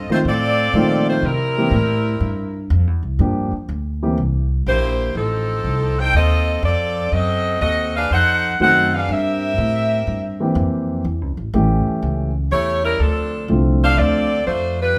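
A bright, close-miked saxophone section with light vibrato carries the melody from the start over woody pizzicato upright bass in this energetic big band swing excerpt at 122 BPM, while a dark, mellow concert grand piano accompanies from 0.1 to 4.2 seconds and returns at 8.6 seconds, the band playing live together in a large studio with moderate reverb as the chords move through F7, C7, F#dim7, A7 and Dm7.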